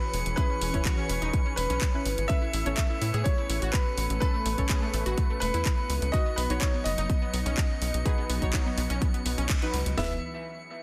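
A dense, heavily limited modern master with light reverb frames this euphoric, expansive slice of progressive house, cut from a longer piece and sitting in a drop at 125 BPM in a straight 4/4. A bright, brilliant concert grand piano carries the melody with a dub echo, shadowed by a very quiet airy, dreamy lead with chorus and vibrato that shares the same register as a second line. Beneath them, a thick, warbling unison pad holds sustained chords in the background, a detuned unison pluck spins arpeggios with dub echo, and a deep, mellow chord stab adds soft, dark, full-bodied hits roughened by vintage 12-bit sampler grit, while a glassy texture of drifting overtones hangs high above with its own built-in reverb. The tight, driving sequencer bass sits up front with sawtooth and square-wave bite, and it, the pad, pluck, stab and glass texture all pump against the sidechain. The house drum kit brings a punchy kick, cracking snare and toms from 0.4 seconds, with handclaps and warm hi-hats, and the band lands an accent at 9.5 seconds. 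The harmony moves from C#m7/E to Aadd9 and B before arriving on E at 10.0 seconds.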